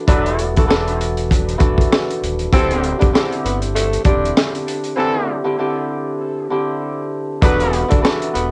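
Tough yet reflective, this boom-bap hip-hop excerpt rides a swung 98 BPM groove in E minor, with a crunchy, saturated breakbeat kit up front (punchy kick, high-tuned snare, rim click and hi-hat) over a deep sine sub bass doubled at the octave. A ringing, fingerpicked Celtic harp carries the accompaniment while a tight horn section adds vibrato-laced stabs through tape echo, and from 2.5 seconds a raspy, breathy tenor saxophone takes a jazz-style solo full of growls and scooped notes, with a break arriving at 5.0 seconds. The recording has the gritty, dry character of a home cassette, moving between E9sus4 and D9sus4 chords.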